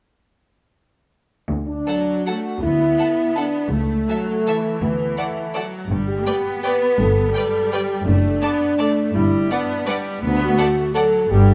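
A moderate concert-hall reverb gives this short excerpt from a longer orchestral ballroom waltz a sense of space, with an elegant, festive mood and a flexible, rubato sway in triple time. The double basses and cellos open at 1.5 seconds, the basses clear and distant with light vibrato, the cellos sitting in the background with soft attacks, expressive portamento and vibrato. At 1.7 seconds a mellow French horn section comes up front with sustained chords, and from 1.9 seconds the bowed strings fill out the texture: violas with a focused tone and smooth top, second violins carrying an even, smooth second line, and the first violins singing a lush melody with vibrato from the background. The harmony moves through D, A/C#, G and D/F# before settling back on D, and the violins finish slightly ahead of the rest.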